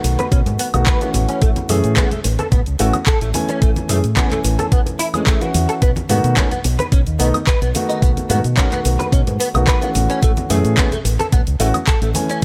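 A dark, mellow grand piano with analog delay, a fingered electric bass pushed through an envelope filter, an overdriven house kit of handclaps, bright hi-hats, shaker and woodblock, and background bongos, egg shaker and congas open this groovy, feel-good nu-disco excerpt at 109 BPM, joined at 0.2 seconds by a clean, direct-recorded electric guitar riff carrying ensemble chorus, analog delay and a filter sweep, and at 0.3 seconds by a thumpy, up-front electronic kick, all over a dry sound that moves between B7 and Amaj7.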